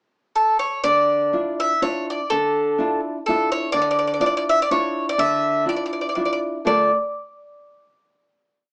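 Heard through a small speaker in a modestly reverberant small room, this short, complete Italian folk piece in D harmonic minor moves at 124 BPM in a lightly swung 3/4, with a passionate, wistful mood. A bright, double-strung bowl-back mandolin sits up front with plate reverb, picking hook-like melodic motifs from its pickup at 0.4 seconds. From 0.8 seconds a woody, full-bodied nylon-string guitar with old strings joins, fingerpicking an oompah of bass notes and chord figures over a Dmadd9 harmony before the piece settles on a closing D minor chord at 6.7 seconds.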